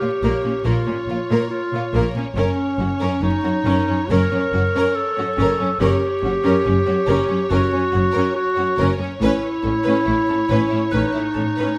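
Eerie and tense, this cinematic fragment sets an expressive, warm violin section melody above an up-front classical clarinet second line, a clear second violin section, lush viola accompaniment, a focused, distant cello section and a rich double bass section, while a delicate, bell-like celesta glints in the background from 0.0 to 2.4 seconds and returns at 10.9 seconds, the harmony moving from Bbm through F# to Aadd9 under light reverb and vinyl crackle.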